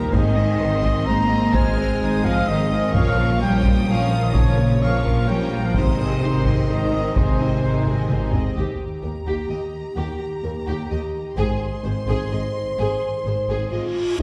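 Set at 128 BPM in a straight 3/4, this cinematic, epic orchestral film cue drives forward with a dramatic, relentless mood, moving through Ab, Bbm and Eb harmonies. A taiko ensemble struck with heavy sticks pounds underneath, capped by a drum fill at 7.9 s. A high violin section carries the bowed melody with focused vibrato, a rich second violin line sits close beneath it, and a warm, distant viola section fills in the accompaniment. Mellow French horns hold sustained chords in the background, and a trumpet section with light vibrato and a smooth top adds stabs before dropping out at 8.3 s. The bass is anchored by a clear, lush cello section and a smooth, even double bass section, and at 13.7 s a huge, dark reverse cymbal and sub drop enters. The orchestra sounds wet and set further back on a scoring stage, and the passage is cut from a longer piece.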